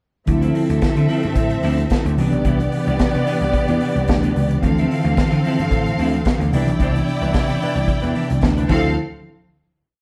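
A driving, glamorous disco piece opens at 0.3 s with the full band playing live together in one room, the whole mix bathed in a wet studio reverb and carrying faint lossy compression artefacts. A vintage acoustic drum kit with a tight kick, medium-tuned snare and rolled-off top lays down a four-on-the-floor beat, with open hats on the off-beats and a crash cymbal. A bright, growly slap bass drives a punchy, syncopated line full of muted ghost notes and chromatic approach notes. A mellow tine electric piano heard through its built-in speakers holds drop2-voiced chords with grace notes, while a dark, clean picked electric guitar chops sixteenth notes in the background. Above them a close, lush studio string section plays intense bowed long notes with vibrato as the harmony moves between Dm9 and Cmaj9, and the piece closes on a final hit at 9.0 s.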